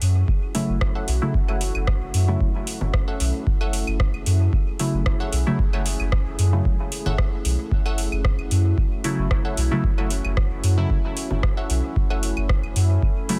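Dub techno at 113 BPM in F# minor, this deep, meditative passage is cut from a longer piece and rests on a single F#m7 chord throughout its 13.4 seconds. A deep, moody ambient pad, built from detuned sawtooth and sine layers with wave-folding, ring modulation and chorus, sustains underneath with a slow attack and long release, while a soft, round dub sub bass holds the low end, both breathing with sidechain pumping. A booming analog drum machine with metallic hi-hats, a rim click and a softly clipped snare plays from the start, and a deep, tape-warm electronic kick joins it at 0.3 seconds, both re-recorded in a large room, over a light 16th-note swing. From 0.5 seconds a mellow, evolving chord stab with detuned sawtooth tones, a filter sweep, chorus and phaser decays into dub echo, and a crisp, digital wavetable stab with a short filter pluck enters at 1.0 seconds to carry a higher riff. 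Layered, overdriven claves and congas join at 1.5 seconds, also trailing into dub echo. The sound is dense and heavily limited, with little reverb.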